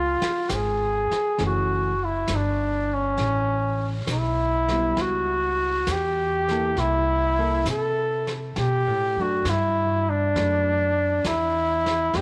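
A jazz ballad with a tender, romantic mood and a gentle swing, this excerpt from a longer piece is carried by a dark trumpet that plays the melody up front, its light vibrato sounding distant and roomy. An upright bass, plucked and woody with steel strings and a touch of tube saturation, sits close beneath it from the very start. A vintage brush drum kit joins at 0.2 seconds, with brushes on a medium-tuned snare and hi-hat giving a small-room sound with a rolled-off top. At 1.4 seconds a clean, fingered hollow-body electric guitar enters in the background, comping through F#m7, C#m7b5, C6 and a rootless Bm7. Light reverb and studio ambience give the whole a warm, intimate sense of space.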